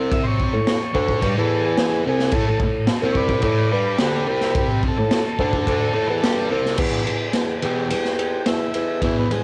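Swaggering and rowdy, this garage rock fragment struts along at 108 BPM in a straight 4/4, cut from a longer piece and captured as a home recording on cassette in a small room with light reverb. A thick, bright fuzz guitar, double-tracked and picked, drives the riff with distortion and a cassette-tape haze, while a dark bassoon plays the bass line from a distant, roomy place with light vibrato in a classical style. Over them a buzzy, vintage combo organ carries the melody, overdriven and wavering with vibrato, taking a solo through the first 6.8 seconds before the music moves into a new section. The raw garage drum kit sits up front, its boomy kick, medium-tuned snare and dark crash and ride cymbals pumping the room with a gritty, saturated punch and a rolled-off top. The clash of grimy organ and fuzz against the stately bassoon gives the whole thing a ramshackle, cheeky charm.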